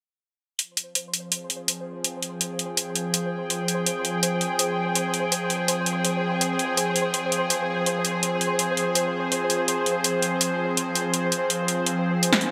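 Half-time drum and bass at 165 BPM in F minor, heavy and tense, opens with an overdriven electronic kit at 0.6 seconds, its woody snare and bright hats up front in gated reverb. A mellow, chorused triangle texture pulsing in time on C5 follows at 0.9 seconds, and a string-like, detuned sawtooth drone with vibrato and a noise layer then sustains an Fmadd9 chord from 1.2 seconds. All of it is set in a moderate plate reverb with a bright 1980s-style digital sheen in this excerpt cut from a longer piece.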